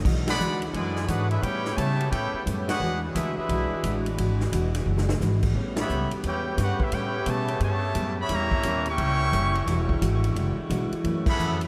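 Big band swing with a joyful, energetic drive, cut from a longer piece, where a warm trumpet section carries the melody up front with vibrato and soft attacks, while a nasal, straight-muted trombone section plays a second line in the background, both touched by analog delay. Beneath them a close-miked saxophone section holds sustained chords, a woody, dark pizzicato upright bass anchors the low end, and a full-bodied fingerpicked steel-string guitar adds accompaniment with audible finger squeak. The swinging drum kit has a boomy kick and a big-room sound, the band hits accents at 0.2, 2.6, 5.7 and 11.2 seconds, and the whole mix is soaked in a dreamy, huge ambient reverb.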